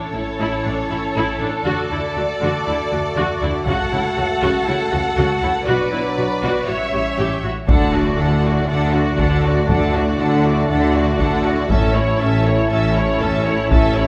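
This heroic, adventurous cinematic cue opens with a full bowed string ensemble. The violins carry a vibrato-rich melody over a more distant second violin line, with smooth violas, expressive cellos and double basses beneath, while a dark French horn section holds sustained chords in the background. A taiko ensemble struck with heavy sticks breaks in briefly at 3.7 seconds. At 7.7 seconds the harmony shifts into a second passage as the taiko return to stay, joined by mellow trombone chords, a close-miked tuba on the bass and a huge, very quiet impact. The taiko stand out above the orchestra, the horns and trombones stay roomy and set back, and a generous hall reverb gives this fragment, cut from a longer piece, a grand, spacious sound.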